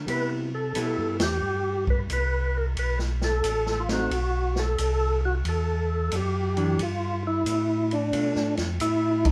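A round, clean tonewheel organ bass line opens this soulful, late-night soul jazz organ trio excerpt, its slow rotary speaker adding a gentle shimmer to the low end. Almost at once a fat, lightly overdriven second organ takes the melody up front, with a percussive attack, key click, chorus vibrato and its own slow rotary speaker. A dark, picked hollow-body electric guitar adds accompaniment until 8.5 seconds. An acoustic drum kit with dark cymbals, a punchy kick, a medium-tuned snare, hi-hat and ride swings the eighth notes in 4/4. The band hits a shared accent at 1.1 seconds and again at 9.1 seconds over a progression of Cmaj7, B7(no3), Emadd9 and Bm7b5. The group sounds like it is playing live in one room, with moderate studio reverb giving the performance a natural feel.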